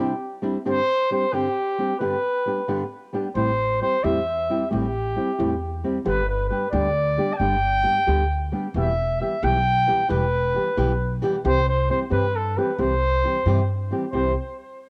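A mellow, distant trumpet plays a classical-style solo melody up front, colored by cassette tape and tape echo, over a thumb-plucked acoustic flamenco guitar with audible finger squeak, also heard through cassette tape. At 3.4 seconds a woody pizzicato upright bass with steel strings joins, and the trio carries this festive, romantic mariachi passage in 6/8 at 89 BPM in C major, moving from Cadd9 through Am7 and Em back to C. Light reverb and studio ambience give this home cassette recording, cut from a longer piece, its character.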